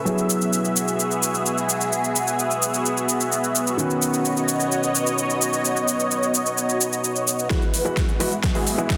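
Triumphant and uplifting, this short cut from a festival progressive house track moves at 129 BPM in E major, shifting between Eadd9 and Badd9 chords. A dark, boxy grand piano and a lush, thick unison pad open together, the pad bright and up front with chorus, phaser and a slow attack, both carrying a vintage 12-bit sampler grit and sidechain pumping, with delay on the piano. From 0.1 seconds a big-room dance drum kit drives with a huge overdriven snare, metallic hi-hats and shaker. At 7.5 seconds the build-up begins: a punchy, detuned supersaw stab riff enters under a filter sweep, with phaser, cassette tape colour and delay, while an overdriven electronic kick drum joins up front during a drum fill. A very quiet riser slips in at 8.6 seconds, all set in a moderate concert-hall reverb and a dense, heavily limited modern master.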